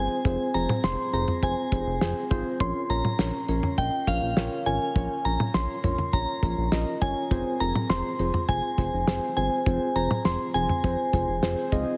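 A glassy, crystalline FM bell carries the melody from the start, ringing between F5 and C6 and treated with chorus, slapback echo and shimmer reverb. It sits over muted, felt-like synth keys with a soft, intimate tone and a retro, saturated pulse-wave bass, while a damped 70s acoustic kit with a fat snare and tight kick comes in at 0.2 seconds. This melancholic yet driving synth-pop passage in F minor at 102 BPM moves from Fm to Bbm and back, all set in a lush hall and pressed into a heavily compressed, radio-like sound.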